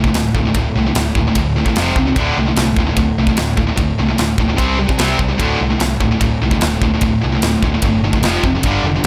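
Dark and heavy, this 9.1-second heavy metal excerpt in D minor at 148 BPM drives a bright, high-gain guitar and a bright, tight distorted guitar through a riff over D5, F5 and C5 power chords, anchored by a growly, punchy overdriven picked bass and a tight, airy acoustic drum kit of kick, snare and bright ride cymbal, all set in light reverb.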